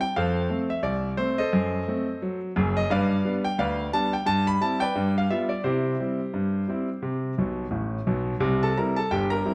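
Set in a moderately reverberant recital hall with a dark, warm production, this short cut from a longer piece of playful, jaunty ragtime features a solo concert grand piano, brilliant and up front with a deep bass, swinging lightly in two through a chord sequence that moves from F to C before the piano plays a fill from 7.4 to 8.4 seconds and lands on C7.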